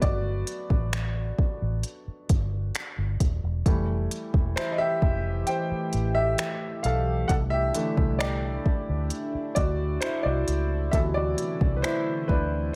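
Tender and smooth, this short contemporary R&B excerpt moves at a relaxed 66 BPM in G major, with a warm, deep-toned concert grand piano carrying the lead over chords of Gmaj7, Fmaj9, C69 and D13. A dark, round, foam-muted electric bass and a soft, tape-tinged electronic drum kit of finger snaps, smooth hi-hat and a gentle kick sit up front beside the piano in a dry, close mix. At 4.1 seconds a shimmering, retro pulse-width pad joins with slow-attack, chorused sustained chords that pump under a sidechain.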